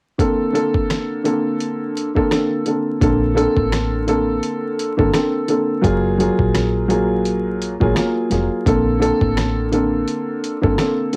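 Wrapped in vinyl crackle and a snug booth ambience on a home cassette recording, this confident, nostalgic boom-bap hip-hop excerpt puts a dark, woody, slightly detuned upright piano up front, filtered and given a taped tone, over a gritty, compressed sampler-style drum kit with a thumpy kick, medium-tuned snare, rim clicks and hi-hat on a swung groove, and a round, foam-muted fingered electric bass joins at 3.0 s as the harmony moves from Bbmaj9 to Gbmaj9 at 5.8 s and back to Bbmaj9 at 8.7 s.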